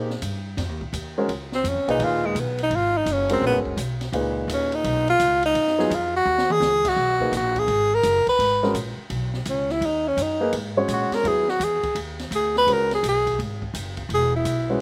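This excerpt of cool, intense modal jazz opens on a dark, mellow grand piano playing suspended chords with a short sustain and a slapback echo, over a woody, thumpy pizzicato upright bass on steel strings. An acoustic jazz drum kit swings in 4/4 beneath them, its dark cymbals, high-tuned snare and boomy kick sitting lowest in the balance. At 1.5 s a breathy tenor saxophone takes the lead, close-miked and up front, its subtone and vibrato shaping a jazz-style solo. A brief drum fill at 6.3 s leads into the second phrase, where the harmony settles onto a minor ninth chord at 7.0 s before moving to a minor seventh. The sound is dry and close, with little reverb.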